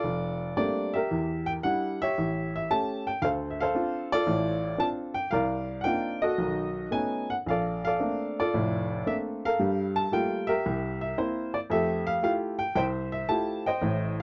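Relaxed and swinging, this short solo jazz fragment in F major moves at 113 BPM in 4/4 with a loose rubato lilt and a swung eighth-note feel, tuned slightly low to A4 = 437 Hz. A baby grand piano plays alone throughout its 14.2 seconds, open and up front with a warm, short-sustained tone, ranging from F1 to A5. It travels through rich extended chords, from Bbmaj13 through Em7b5, Cm11 and B9 before settling on Fmaj9, set in a dark production with light reverb.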